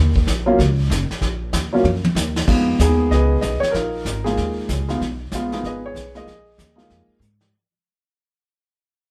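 A live-in-one-room sound with moderate studio reverb frames this swinging, late-night jazz piano trio excerpt in Eb minor at 190 BPM, where an intimate baby grand with audible action noise and long sustain carries the melody up front over woody, thumpy pizzicato upright bass on gut strings and a vintage brush kit with dark cymbals and a punchy kick, its drum fills landing at 1.8 and 7.2 seconds as the harmony moves from Ebm7 to Fm7b5 and Bb7sus4 during a fade-out beginning at 2.5 seconds.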